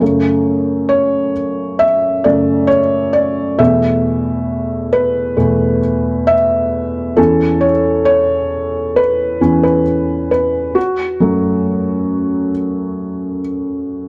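A felt-muted upright piano carries this short melancholic pop fragment alone from 0.0 to 14.1 seconds, its soft, mellow tone sitting up front with audible action noise that lends an intimate, vintage character. The longing mood unfolds over a slow straight pulse as the harmony moves from F#m through Esus4 and Aadd9/E before settling back on F#m at 10.8 seconds. The sound is dry and close in the manner of a 1970s studio, touched only by light reverb and a small-room ambience.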